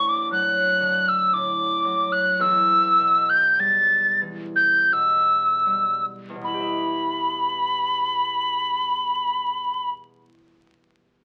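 Celtic folk in a free, rubato 3/4 that slows over the first 6.4 seconds, with a haunting, longing mood: an airy, close-miked tin whistle sings the melody up front with vibrato and tongued chiff, while a fingerpicked concert harp rings softly beneath it over a move from D to E minor, all heard through moderate studio reverb and the crackle of a very old 78 rpm record in this fragment cut from a longer piece.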